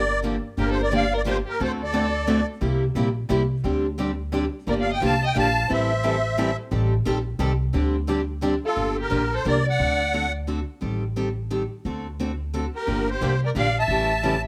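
This fiery, bittersweet acoustic string swing piece in the jazz manouche style moves in a lilting triple metre with a swing feel, and is cut from a longer performance. A reedy musette accordion with its shimmering wet tuning carries the melody up front in short, full phrases, close-miked yet touched by plate reverb. A single bowed violin adds a distant second line, expressive with vibrato and portamento. Underneath, a woody, thumpy pizzicato upright bass on gut strings holds the low end up front throughout, while two picked acoustic guitars accompany: a boxy parlour steel-string with a warm tone, and a bright swing-style guitar with fresh strings, both showing finger squeak. The swing guitar drops out at 8.5 seconds as the second section begins at 8.8 seconds, returning at 12.9 seconds over Gm7 and A7 chords, all set in a moderate club reverb.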